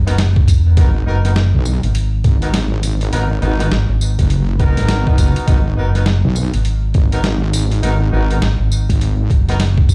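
A dry mix that sounds as if it's blasting from a big sound system in a bare stone room opens this gritty, funky glitch hop excerpt, set in a swung 4/4 groove over a single G#m7 chord. A dark, round fingered electric bass sits up front from the very start, and a gritty, thumpy electronic kick, pitched down and tape-warm, arrives at 0.4 seconds. A compressed, sampler-style boom bap kit supplies hi-hat, a medium-tuned snare and tambourine with a gritty, pitched-down character. At 0.8 seconds a heavy wobble bass joins, its detuned sawtooth and sine tones thickened by chorus and tube saturation until it sounds saturated and up front. Distant, roomy jazz-style horn stabs float above the low end, tight as a section and pumping against the sidechain while dub echo trails behind them.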